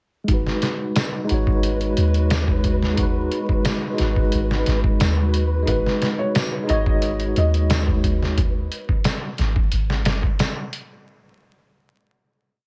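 Smoky and melancholic, this trip hop piece sits on a straight 4/4 groove that begins at 0.3 seconds. A compressed, pitched-down sampler-style drum kit, muffled and up front with a thumpy kick and medium-tuned snare, plays a looped breakbeat with edits, while a tambourine adds loose percussion in the background. A soft, round 808-style bass carries a deep, dark dub-style line. A bright, clean tine electric piano holds spread-voiced chords with syncopated pushes, coloured by tremolo, tape echo and a filter sweep, over a warbling, nostalgic pad and a flickering, grainy texture holding one high note. At 5.7 seconds a felt-muted upright piano, intimate and soft with audible action noise, brings a short repeating riff melody through tape echo, all under a layer of vinyl crackle.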